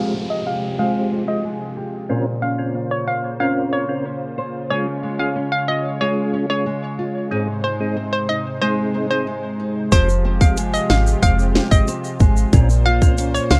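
A hollow, bouncy square-wave pluck carries the melody through a filter sweep and tape echo in this tough, sultry dancehall excerpt in F minor at 92 BPM, over a mellow, lightly overdriven tonewheel organ with slow rotary and sidechain pumping, a lush, nasal unison pad, fingerpicked nylon-string guitar arpeggios and a downlifter that runs until 4.7 seconds, until at 9.9 seconds a woody, round FM bass, a tight, sharp electronic drum kit and a vintage tube shaker drop in within a dark, dry mix.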